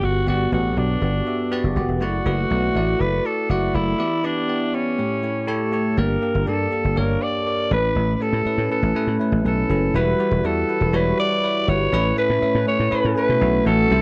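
A raspy alto saxophone carries the melody of this romantic, uplifting 1980s-style pop fragment, its gritty, vintage tone shaded with vibrato and treated with tape echo, sitting up front throughout. Beneath it, a bell-like tine electric piano supplies bright, clean accompaniment coloured by a phaser. A dry thumbed slap bass, foam-muted and punchy, anchors the low end. The tempo is 121 BPM in a straight 4/4, and the harmony moves through Gmaj7, Dadd9/F# and Em7 to A7 before shifting at 6.0 seconds to a second passage built on Gm, Aadd9 and Emadd9. The sound is dry and close, with a small room ambience that gives it the feel of a 1970s-style studio recording.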